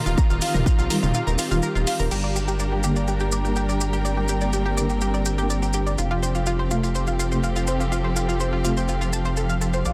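A dense, heavily limited modern master with light reverb gives this short cut from a longer melodic techno track a driving, cinematic weight, moving at 124 BPM in a straight 4/4 in G minor. A rich, smooth studio string section holds sustained chords throughout, while a second, lush and distant string ensemble adds a focused texture in the background, both bowed with vibrato and pumping under sidechain compression. A round, bright analog pluck spins arpeggios through chorus and digital delay, and a gritty, aggressive synth bass with oscillator sync, resonant filter sweeps and saturation sits up front. A layered, punchy electronic kick appears only briefly near the start, and a tape-warm analog drum machine adds crash cymbal, hi-hat and toms in the opening moments, while grainy, mellow, band-limited maracas add a vintage color throughout. A warbling, vintage brassy pad with ring modulation and a filter swell plays stabs in the background, and a fat, detuned synth brass sounds a single melody note at 9.9 s. 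The harmony moves from Ebadd9 through a short break into Gm at 2.1 s and then to F.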